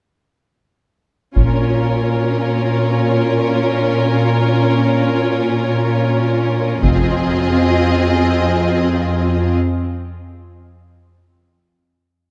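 Hard-stick taiko hits, close and dry, punch through this dramatic, heroic orchestral film score in free time and Bb minor, cut from a longer piece, as up-front, smooth cello and viola sections move from Bbm to Fm7 at 6.8 s beneath a distant, focused violin line, brief bowed double bass notes add low weight at 1.4 s and 6.8 s, and concert hall reverb frames the ensemble before a break at 9.6 s.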